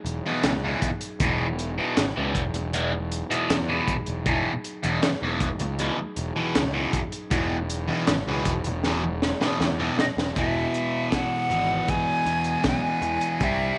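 Trippy and kaleidoscopic, this psychedelic rock passage, cut from a longer piece, moves at an unhurried 79 BPM in a straight 4/4, centred on E major and resting on an Eadd9 chord before settling onto plain E at 10.4 seconds. A double-tracked fuzz guitar sits up front with a bright, distorted riff coloured by phaser, while a picked electric bass adds overdriven fuzz beneath it. The acoustic breakbeat kit is crunchy and saturated yet dark and smooth, pairing a high-tuned snare and tight kick with a gritty, rolled-off top, and it plays a fill from 8.8 seconds. A very quiet tonewheel organ holds soft, flute-like sustained chords through a slow rotary speaker. At 10.0 seconds a breathy jazz flute enters with a high melody, its crisp, chiffy attack and vibrato trailed by slapback echo, and a moderate spring reverb wraps the whole mix.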